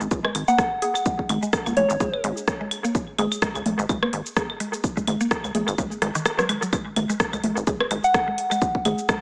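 Heard through a small-speaker sound with heavy echo and a moderate spring reverb, this cool, clinical minimal techno excerpt swings its 16ths over a punchy, tape-warm electronic kick and a house kit of metallic hi-hats, rim click and shaker, joined by analog-toned rim click, claves and congas. A rubbery, hollow square bass with a dark filter pluck pumps against the sidechain beneath a woody, round, mallet-like synth riff treated with chorus and delay, all resting on a single suspended chord. A pure, gentle synth bell melody appears from 0.5 to 2.2 seconds and returns briefly at 8.0 seconds.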